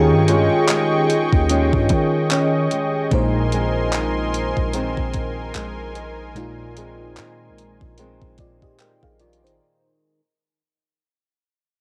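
The sound is a home recording on cassette in a lightly reverberant space, fading out across its whole length in this short cut from a longer R&B piece. At a slow 74 BPM in 4/4 with a gentle sixteenth-note swing, the mood is tender and smooth, moving from Eb9sus4 to Bb9sus4 at 3.1 seconds. A lush, dreamy FM electric piano, layered with a soft pad, carries the accompaniment with a dark, detuned, full-bodied tone that chorus, tremolo and plate reverb colour. Above it, a warm sawtooth analog pad holds sustained chords up front with a soft attack and long release, while a fingerpicked old ladder-braced acoustic guitar plays woody, boxy arpeggios on aged strings. Underneath, a deep 808-style sine bass sustains long notes that decay. Entering at 0.3 seconds, a crisp 8-bit drum machine of handclaps, hi-hat and a thumpy kick sits up front, overdriven and given a tape grit, as if re-recorded in a small room.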